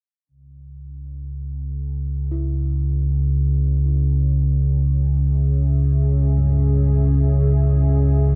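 Dark ambient drone in C# minor and free time, cut from a longer piece, where a deep, rumbling, detuned drone with ring modulation and its own reverb sits up front from 0.8 s, joined at 2.3 s by a moody, full-bodied analog pad fading in with chorused sustained chords and by very quiet, metallic bronze gamelan-type bossed gongs playing beating arpeggios, all in an ominous mood within a lightly reverberant space.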